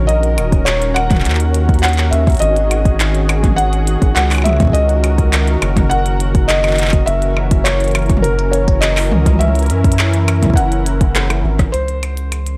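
Eerie and cerebral, this IDM fragment cut from a longer piece moves at 103 BPM in a straight 4/4, with a felt-muted upright piano carrying a soft, intimate, vintage melody through delay over a dark, detuned sawtooth pad thickened with chorus, drifting through D#m7, G#7sus4 and F#7 before landing on C#m6. A round analog bass sits up front with a deep, plucky square-and-sine tone, while a glitchy drum kit of clicky hats, handclaps, rim clicks, toms and percussion blips joins at 0.1 s and a deep, tape-toned electronic kick enters at 0.5 s, both set in studio reverb. A drum fill spans 10.9 to 11.7 s, and the whole mix sits in a light reverb.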